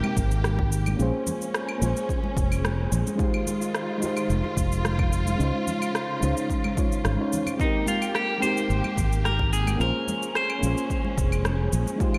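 Set in a big, arena-like space with moderate reverb, this sunny sunset chillout piece at 109 BPM rides on a round, up-front fretless bass and a punchy, overdriven electronic kick, with overdriven electronic claves, cabasa and rim click carrying studio reverb and slapback echo, very quiet ringing congas played with soft hands, a mellow, full-bodied FM electric piano with chorus and digital delay, and a distant bowed string section with vibrato and portamento, before a bright, clean semi-hollow electric guitar enters at 7.6 seconds with a picked melody through delay and slapback echo.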